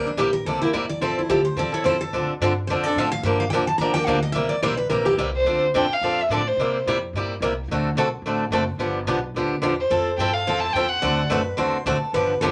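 Acoustic string swing in the jazz manouche tradition, this short excerpt moves at a brisk 216 BPM with a swinging, charming feel and a tuning of A4 = 442 Hz. The picked swing-style guitar carries the accompaniment throughout, boxy and up front, with finger squeak audible on its strings, while the upright bass supplies a dark, woody, thumpy pizzicato foundation from its gut strings. A bright, full-bodied steel-string guitar with fresh strings takes a solo over the opening stretch until 5.1 seconds, moving through C7, Fmaj7, Dm7 and Gm7 changes, and returns briefly near the close. The violin enters at 5.4 seconds with the melody, bowed sul tasto by a single player, its soft attack, airy bowing and light vibrato sounding intimate and close. A wet studio ambience surrounds the group, giving the ensemble a sense of space before the fragment cuts off on a D7 chord.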